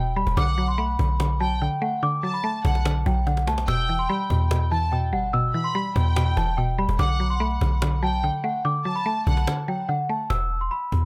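A dry, close-sounding mix carries this eerie, dark half-time trap excerpt, where a bell-like, delicate celesta melody with delay floats over a round, percussive FM synth pluck, a deep, boomy 808-style bass sits up front, a woody cajon with faint snares keeps time, and a distant, lush violin section played sul tasto adds a shadowy second line until a break at 9.5 seconds.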